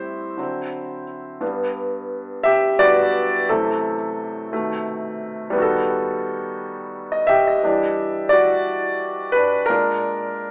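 A warm grand piano carries this brief, yearning R&B passage alone, its intimate, natural tone sitting up front with long sustain and audible action noise. Cut from a longer piece, it moves in a slow, straight 6/8 with a late-night feel, spanning from F#2 to G5. The harmony drifts through rich extended chords, from D9 and Gmaj7 into a darkened F#m7b5 and B7, then a tense B7b13 before settling on Em7 and closing on A#7. The piano is heard solo from 0.0 to 5.6 seconds and again from 7.6 seconds to the end at 10.5 seconds. A moderate stone room reverb surrounds the playing, while a telephone-like filtering gives the whole sound a narrow, distant cast.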